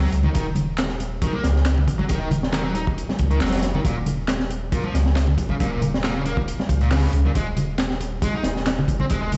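A double-tracked fuzz guitar riff with delay opens this raw, energetic breakbeat cut alongside a deep, thick sub bass with a fast attack and long sustain, as a crunchy, up-front drum kit with a tight kick and high-tuned snare drops in with a lightly swung groove. Bright, damped congas sit close and dry in the background, and from 0.8 seconds distant analog handclaps, re-recorded in a large room, join them. The sound feels like a big system played in a bare stone room, dusted with vinyl crackle and a dull, rolled-off top.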